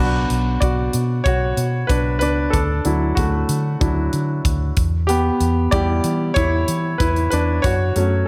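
A dreamy, reverb-soaked mix bathes this short piano-driven pop excerpt in a moderate plate reverb, giving its straight 94 BPM pulse in 4/4 an anthemic, warm glow. A clear, polished concert grand sits up front and carries the solo across the whole passage, moving through Bm, Dadd9, Em and F#m. A dark, round, foam-muted fingered electric bass supports it, while a mid-forward studio drum kit joins at 0.3 s with hi-hat and a punchy kick.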